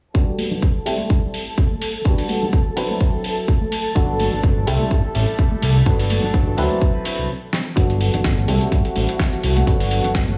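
Filtered and pumping under a light digital reverb, this sunny, feel-good disco house excerpt sets a mellow, stringy clav with phaser and a reedy chamber string section with 12-bit sampler grit over a punchy, up-front electronic kick drum, background egg shaker and congas, and a dusty sampler-style kit with hi-hat and a medium-tuned snare. At 4.0 seconds a fat, detuned analog bass and a bright, twangy direct-recorded clean electric guitar riff join, both pumping with the sidechain under a filter sweep. The music stops briefly at 7.3 seconds, and a drum fill leads into a new section at 7.8 seconds that keeps cycling through Gmaj9 and C6 chords.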